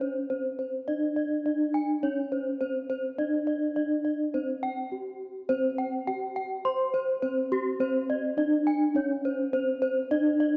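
Ceremonial and brilliant, this short gamelan excerpt moves at 104 BPM in a straight 4/4 in C pelog, with a brief break from 4.6 to 5.5 seconds. Up front, one bronze metallophone struck with padded disc mallets carries the melody between C4 and C5 in a mellow, soft, boxy tone, while a second bronze metallophone played with a horn mallet rings out bright arpeggios reaching up to C6. Both instruments' paired tuning produces shimmering beats, and the dark production sits in a wet scoring-stage reverb.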